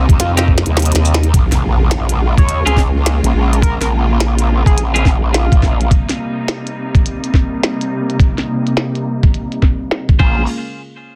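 The growl bass stands out in this playful, funky glitch hop excerpt at 105 BPM in Bb dorian, swung on the sixteenths: aggressive, wobbling and overdriven, it sits up front over Cm7 and Bbm7 until 5.9 seconds. A gritty, thumpy, pitched-down kick and a glitchy kit of tiny snare, clicky hats, shaker and crash open with a drum fill, and the kick briefly drops out before an electronic impact lands at 1.3 seconds. A lush, biting symphonic string section holds pumping sustained chords throughout, and from 1.3 seconds filter sweeps run over both the drums and the strings, while twangy, picked clean electric guitar stabs and an edgy, tearing sync lead with vibrato and delay sit farther back in the first half.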